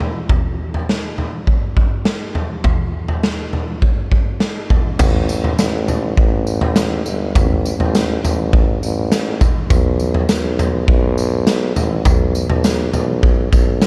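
A gritty, saturated acoustic drum kit of kick, medium-tuned snare, crash, toms and tambourine opens this dreamy, blissful dream pop fragment at 102 BPM in a straight 4/4, its punchy kick sitting up front in a bright stone room with a pumping feel, before a warm solo tuba enters at 5.0 s with light vibrato and a punchy, present pop-style line between G1 and B1, all in a dark, warm production with little reverb.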